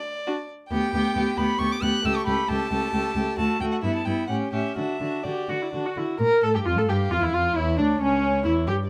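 Graceful and lively, this fragment of a quick classical-period string quartet movement in D major moves at 134 BPM in a rubato 3/4: a warm first violin carries the high melody from 0.0 s, a second violin and a distant viola with a rich gut-string tone and light vibrato fill the inner lines, and a dark, up-front cello with a smooth top anchors the bass, all four bowed in a reedy period style under light reverb as the harmony turns to Gm13 at 6.2 s.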